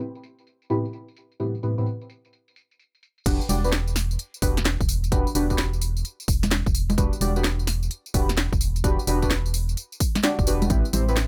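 An organ-like FM bass with a hollow, percussive tone anchors this bouncy, late-night slice of two-step UK garage, arriving up front with the drop at 3.3 seconds. The piece moves at 129 BPM in E minor with a 65% swing on the sixteenths, opening on an Am9 chord before moving to Em7 and returning to Am9 near the end. A house drum kit runs throughout, its cracking snare, crisp hats, congas, tambourine and crash cymbal all softened by low-pass filtering. Deep, mellow chord stabs enter at 0.7 seconds, blending several wave shapes with a sub octave and treated with chorus, phaser and delay for a soft, shadowy glow. A punchy electronic kick joins the bass at the drop, and the whole passage sits in a light reverb as a fragment cut from a longer track.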